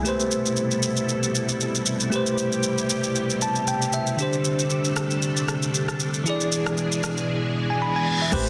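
A bell-like tine electric piano, filtered and up front, carries this hypnotic, late-night amapiano excerpt at 116 BPM in A minor, moving through Am9, D7sus4 and E7 over lush vintage string-machine chords with ensemble chorus, an electronic afro-pop kit with a deep kick, rim click, shaker and crash, a piano fill at 3.2 seconds, a reverse cymbal rising into an impact at 8.3 seconds where a hollow, dark organ stab and a round log drum bass arrive, all in a dense, heavily limited mix with a lush hall reverb.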